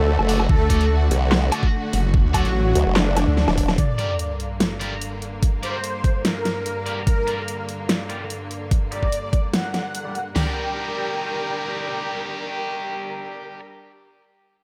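This menacing, chaotic heavy wobble dubstep excerpt opens mid-drop at 146 BPM in a half-time 4/4 feel in G harmonic minor: a mellow, detuned supersaw melody floats over rich bowed symphonic strings that pump with the sidechain, while a saturated sawtooth wobble bass and a formant-sweep wobble bass, both with chorus and overdrive, growl up front until about 3.5 and 3.8 seconds respectively. Two overdriven, layered drum kits hit hard with a knocking kick, huge snare, bright hats, handclaps, woodblock and toms, and a double-tracked high-gain guitar adds distorted stabs through a low-pass filter and digital delay. A drum fill leads into a sub drop impact at 3.8 seconds as the harmony moves from D to G minor and the guitar takes a filter sweep, and the drums stop by 10.5 seconds, leaving melody, strings and guitar in a light digital ambience.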